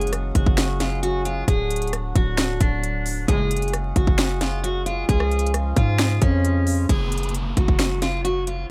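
Menacing and eerie, this half-time trap hip hop excerpt sets a low-pass-filtered, picked steel-string acoustic guitar melody over reedy, breathing harmonium chords and brief bowed stabs from a gut-string chamber string section in the background, while a punchy, heavy 808-style bass and an up-front electronic drum kit with hard-clipped kick, sharp snare, crisp hats, finger snaps and rim clicks anchor the groove, the harmonium dropping out at 6.9 s as an electronic downlifter enters over a dry mix dusted with vinyl crackle.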